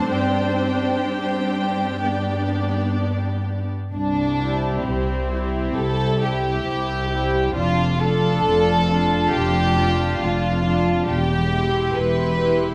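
A rich second violin section, sitting up front with a soft attack and a pure, floating tone played sul tasto, carries the inner line of this slow, rubato romantic movement for string orchestra in C major, moving at about 61-70 BPM in 4/4 and tuned to A4 = 438 Hz. The melody sits with a dark, woody first violin section, bowed with vibrato and kept distant in the background, which gives the tender, lyrical tune a lush, veiled quality. A warm viola section supplies the accompaniment, and a cello section adds intimate, close bass with light vibrato above a double bass section whose smooth-topped tone anchors the low end. All five sections play sul tasto throughout this brief cut from a longer piece, moving from a suspended G opening into C at 3.9 s and on through Dm/F toward C/E. A moderate scoring stage reverb surrounds the strings with a sense of space.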